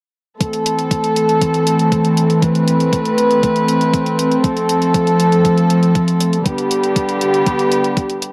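This short excerpt of italo disco opens at 0.4 seconds with a dark chamber string section holding sustained chords up front, its bowed, nasal gut-string tone reedy and smooth on top in a period style. Beneath it, an electronic kick drum with a thumpy, sampler-style sound sits close in the mix, high-pass filtered and tape-warm, while a quieter electronic hi-hat shares that same re-recorded small-room character. The groove moves at 119 BPM in a straight 4/4, set in A minor with tuning at A4 = 437 Hz. The chords travel from Am to F at 4.4 seconds and on to G at 6.5 seconds, giving the passage a melodramatic, nostalgic pull. The sound is that of a dry, close 1970s-style studio recording with a modest booth ambience.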